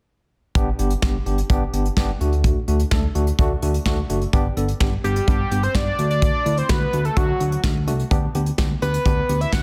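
A fat, warbling analog lead with chorus and tape echo takes the melody from 5.0 s, its detuned sawtooth and square-wave tone sitting up front over a bright tine electric piano with medium tremolo and a smooth, dark synth bass built on sawtooth with ring modulation. This is bright, wistful synth-pop in G major at 127 BPM, cut from a longer piece, with a soft acoustic brush drum kit giving a punchy kick and medium-tuned snare beneath chords moving between G and D. Light reverb lends a small-room ambience to a dense, heavily limited modern master.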